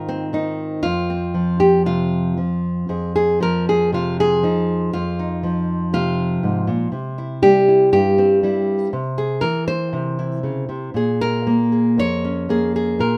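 A light reverb surrounds an up-front nylon-string guitar with fresh strings, giving this short excerpt from a longer folk piece a haunting, intimate air. Fingerpicked in a classical style and played alone with a free, rubato feel, the guitar spans its low bass to a high Db5. Opening on Ab and F5, it settles into a phrase that moves through Fm7 at 2.9 seconds, then C and Bbm7.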